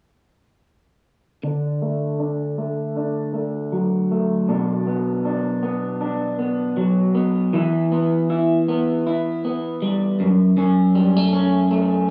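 The rhythm sits in a relaxed 4/4 at 79 BPM, with a gentle swing on the sixteenth notes that gives this indie pop fragment a loose, easygoing lilt. A single electric guitar, played through a small old amp, carries the accompaniment from 1.4 to 12.1 seconds. Its picked, twangy tone is slightly broken-up and sits up front, coloured by a lush chorus, a warbly drift in pitch and a low-pass filter that sweeps across its sound. In D major and tuned a touch sharp to A4 = 441 Hz, the harmony moves from D to Bm, then Em, and settles on F#m7. Light reverb and a digital ambience surround the rough home-demo mix, lending the hazy, sunny mood a soft glow.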